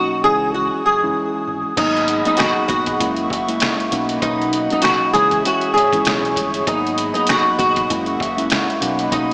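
A swung 98 BPM boom-bap hip-hop groove in G# minor arrives at 1.8 seconds on a gritty, pitched-down sampler-style kit with a thumpy kick, medium-tuned snare, rim click, hi-hat and crash, joined at the same moment by a hollow, flute-like pad with slow attack and chorus. From the start, an up-front fingerpicked flamenco guitar carries the melody with audible finger squeak, ensemble chorus and analog delay over a mellow, clean tine electric piano tinted by cassette tape, while a round, dark fingered dub bass sits low in the background from 0.2 seconds. This tough, dreamy fragment of a longer piece cycles through C#m, G#m7, F#7 and Bmaj7, its mix soaked in a huge ambient reverb yet heard through a small-speaker filter.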